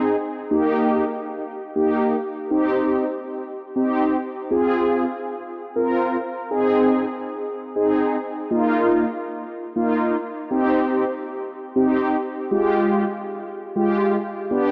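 Nocturnal and cool, this short pop excerpt at 120 BPM in 4/4 features a lone mellow synth brass, brassy and round with a detuned sawtooth edge, filter sweep and vibrato, sitting up front between Ab3 and Bb4 with chorus and analog delay. It moves through Ab, Eb, Cm and Fm before shifting at 8.5 seconds to Bbsus4, Cm and a closing Fmadd9, tuned slightly below standard pitch at A4 = 437 Hz. A long wet plate reverb soaks the mix in a dreamy haze.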